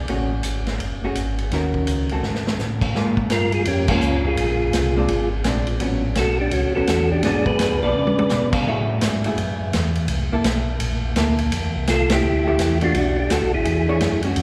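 Soul jazz organ trio in A major at 168 BPM, bluesy and swinging, cut from a longer piece and bathed in a cathedral-like reverb that lingers long after each note. A mellow tonewheel organ carries the bass line through a slow rotary speaker with a touch of key click, a dark, compressed hollow-body guitar comps beneath, and a vintage drum kit with dark cymbals and a tight kick sits up front, adding fills at 2.2 and 8.0 seconds. From 3.3 seconds a second, percussive tonewheel organ takes the melody with third-harmonic percussion, chorus vibrato and a fast rotary spin, while the band hits accents together over rich jazz chords such as C13, Fmaj9 and E13.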